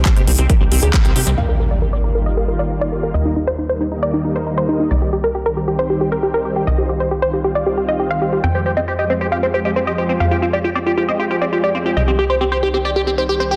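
Uplifting trance at 136 BPM in C minor, euphoric and emotional, where a punchy kick drops out at 1.0 seconds and a crisp-hatted clap kit follows at 1.4 seconds under an up-front impact, leaving a lush, detuned unison pluck melody with dub echo and a filter sweep to ride over a funky sawtooth bass, a silky string pad and a squelchy acid arpeggio that returns at 8.4 seconds, all breathing with sidechain pumping through chords moving from Cm to Ebadd9 and Fmadd9 in a dense, heavily limited mix.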